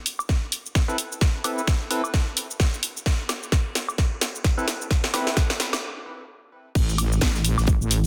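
Aggressive and swaggering, this bass house cut at 130 BPM in A minor with a swung 16th feel opens on a build-up and drum fill, where a cracking-snare house kit with crash, shaker, woodblock and hi-hats meets a tight, up-front electronic kick and a hollow, ring-modulated organ stab that pumps through chorus and delay over an Amadd9 chord, then breaks at 5.8 seconds before the drop at 6.8 seconds unleashes a heavy, saturated, detuned wobble bass on A1, with a very quiet, airy acoustic studio kit adding hi-hat and snare, all bathed in moderate plate reverb under a dense, heavily limited master.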